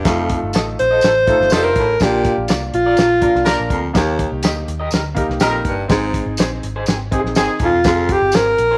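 Warm and danceable, this short cut of uptempo 1960s-style soul sets an up-front alto saxophone melody with vibrato, heard from 0.8 to 3.7 seconds and again at 7.7 seconds, over a clear horn section's second line, a scooped, soft-attack baritone saxophone riff, muffled lo-fi drums with a fat snare and tight kick, a round foam-muted picked bass, woody upright piano, slightly broken-up guitar stabs with tremolo, and a jingly tambourine in the background, all in light studio reverb.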